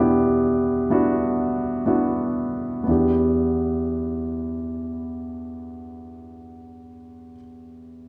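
Longing and emotional, this brief pop fragment cut from a longer piece sets a grand piano up front, warm and accompanying in E minor from E2 to G4 at roughly 58-66 BPM in straight 4/4, opening on an Em7 and slowing down through the first 2.9 seconds before a new section begins, all bathed in a wet concert hall reverb with a dark production.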